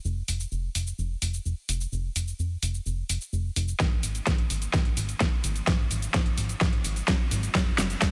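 Set in light digital ambience, this uplifting, anthemic festival progressive house build-up, cut from a longer piece, rides a fat, detuned sawtooth bass with sidechain pumping, saturated filter plucks and a fast attack under an up-front, overdriven big-room drum kit of hi-hat, shaker and huge snare, until a punchy, layered electronic kick arrives with a drum fill at 3.8 seconds and drives on to the end at 8.1 seconds.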